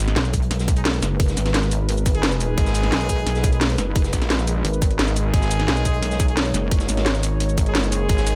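Up-front pulsing pluck wobble bass, heavy and tube-saturated with chorus, drives this aggressive, mechanical dark technical drum and bass cut in G# minor at 174 BPM, joined by a thick detuned saw bass in bursts from 2.6 to 5.7 seconds, a tight electronic kick, a layered kit of cracking snare, metallic hats and cabasa, a very quiet gritty breakbeat kit, a moody evolving analog pad holding a G#madd9 chord, and bright brass ensemble stabs with light vibrato and digital delay entering at 0.8 seconds, all set in a small room ambience.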